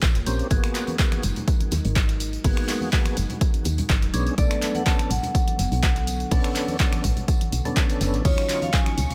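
A short excerpt of hypnotic deep house, heard in a small room, where an overdriven, punchy electronic kick sits up front over a soft, woody FM bass, a gritty, very quiet breakbeat kit, an overdriven analog drum machine with claps, snaps and crash, and background congas, while a deep, moody ambient pad pumps under the beat, a lightly overdriven tonewheel organ stabs through slow rotary swirl and 12-bit grit, a ringing, dry vibraphone melody enters at 4.4 seconds, and a shimmering string machine appears at 8.2 seconds as the minor ninth chords drift.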